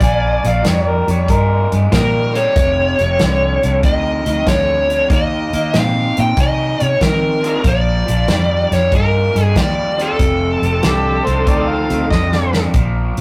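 This gritty, swaggering electric blues shuffle opens in full swing, with a dark, smooth, overdriven lead guitar carrying the melody up front over a raw, picked garage-guitar riff, a round, foam-muted fingered bass and a natural acoustic drum kit with a punchy kick and medium-tuned snare. An amplified, overdriven harmonica adds a brief second line at the start, with light vibrato, tongue slaps and scooped, jazz-styled notes, then returns at 10.8 seconds. A full, shouting tonewheel organ with a slow rotary speaker and light overdrive sits in the background, making a short appearance before settling in from 7.4 seconds. The drums close with a fill at 12.1 seconds. The whole piece has the rough, tube-saturated feel of a rehearsal-room recording, with a small, wet room around it, and it is cut from a longer piece.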